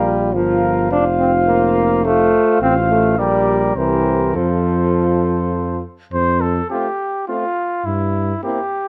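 Light reverb surrounds this stately brass quintet passage, a short cut from a longer classical piece in F major, moving at 104 BPM in 3/4. An up-front trumpet with a mellow tone and light vibrato carries the melody from E4 to F5, while a distant flugelhorn with a soft attack sings a second line; a bright trombone up front and a clear, vintage-toned French horn in the background fill the accompaniment, and a warm bass trombone anchors the low end from F1 to G2. The harmony passes through F, Gm/Bb and C7, the bass trombone stops at 8.3 s, and the trumpet sounds on alone until 8.9 s.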